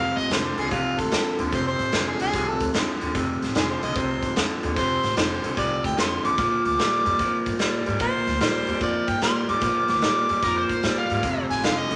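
A swung shuffle drives this gritty, soulful electric blues excerpt: an overdriven harmonica with light vibrato and scooped notes carries the melody up front over a slightly broken-up, lo-fi guitar riff, a woody, growly upright bass and a punchy, saturated garage drum kit that enters at 0.2 s, before a bright slide guitar adds a brief second line at 10.4 s, the whole set in a moderately reverberant large studio.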